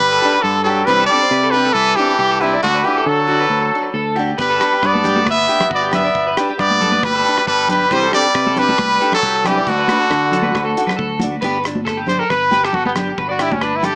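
Heard through a small-speaker sound in a moderate studio room, this excerpt from a longer highlife guitar band track moves in a danceable, carefree 4/4 at 137 BPM in G major, with a lightly swung sixteenth feel. A brilliant, up-front trumpet carries the melody with scooped notes, light vibrato and tape echo, over a nasal, growling straight-muted trombone second line that drops out at 11.0 seconds. A twangy, slightly broken-up electric guitar plays arpeggios through subtle chorus and tape echo, alongside a bright picked steel-string acoustic guitar with finger squeak and a round fingered electric bass; a dry drum kit with a tight kick joins at 4.4 seconds, ringing high-tuned congas soon follow, and the trumpet takes a forceful jazz-style solo from 11.4 seconds.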